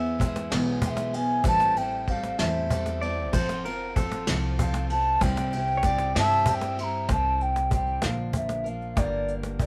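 Pedal steel guitar, played with fingerpicks and volume swells, opens this peaceful, pastoral acoustic folk excerpt alongside a full-bodied picked acoustic guitar and a woody, growly upright bass, in C mixolydian at 64 BPM in 6/8. Brushed drums with dark cymbals and a snappy, up-front cajon join at 0.2 seconds, and a distant, hollow wooden flute with vibrato takes the melody from 0.8 seconds. The pedal steel's second line drops away at 7.1 seconds as a new section begins, while the steel, guitar and flute carry a cassette-tape tint within a moderate, home-recorded booth ambience.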